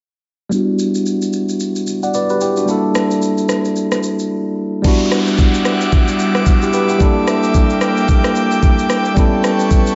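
A clean tine electric piano, low-pass filtered and up front as if through built-in speakers, opens this relaxed amapiano fragment alongside a produced, small-room electronic drum kit with a knocking kick, rim clicks, shaker and crash, moving between Em9 and Gm6 in a swung groove. After a short break, a background downlifter enters at 4.8 s, and at 5.2 s an airy, breathy pad of detuned sawtooth, triangle and noise arrives with slow-attack, chorused chords that pump with sidechain, before an A9 closes. The dreamy mix is soaked in plate reverb, its top end rolled off above 7.7 kHz.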